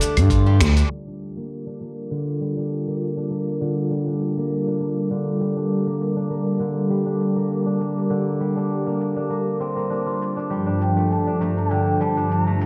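This earthy, hypnotic organic downtempo excerpt opens with silvery, ringing arpeggios from a fingerpicked steel-string zither, colored by tape echo and shimmer reverb. Beneath it runs a gritty, compressed sampler-style drum kit of cabasa, claves, finger snaps and hi-hat, while a tight, cracking djembe and a smooth, gliding sawtooth synth bass appear only briefly, joining a band accent. From 0.9 s a detuned, mellow analog pad holds sustained chords with chorus and sidechain pumping as a filter sweeps across the zither, and at 10.8 s an airy, distant bamboo bansuri adds a soft-attack melody with vibrato, all within a dark, lightly swung production and a moderate recital-hall reverb.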